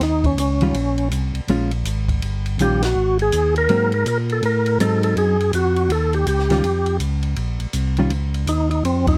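Soul jazz organ trio in a greasy, swinging groove, with a gritty, overdriven tonewheel organ carrying the melody through a slow rotary speaker and chorus vibrato, a second tonewheel organ with audible key click holding down the bass, a dark, clean hollow-body guitar accompanying from 0.6 to 8.1 seconds, and a dry compact cocktail kit with dark cymbals, a high-tuned snare and a punchy kick sitting back in the mix, with a band accent at 2.8 seconds, all captured close and detailed with little reverb in this brief cut from a longer piece.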